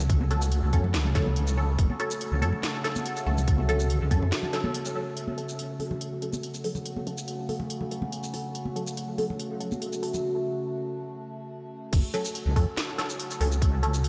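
Dark and cavernous, this half-time deep dubstep excerpt sits in a dreamy, reverb-soaked church-like space, with a resonant, wave-folded drone sustaining an F# minor chord under filtered dub chord stabs that carry phaser, ensemble chorus and dub echo. A heavy, saturated wobble bass sits up front alongside a tight, tape-warm electronic kick, both dropping out around 4.3 seconds for a brief break and returning for the drop at 11.9 seconds. Meanwhile a garage drum kit with a cracking snare and crisp hats plays throughout, and soft-handed congas with dub echo linger in the background until 10.2 seconds.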